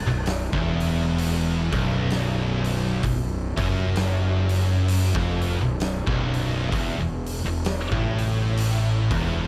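A fuzz-soaked, growly bass opens this heavy, sludgy stoner and doom metal excerpt at a crawling 65 BPM with a swung feel, joined at 0.1 seconds by a bright, double-tracked high-gain guitar and two thick fuzz guitars sitting in the background, all grinding out a low riff over an oversized, low-tuned acoustic drum kit with a punchy kick, fat snare, hi-hat and a gritty, pumping big-room sound, the power chords moving from B5 to E5 at 6.7 seconds under light reverb.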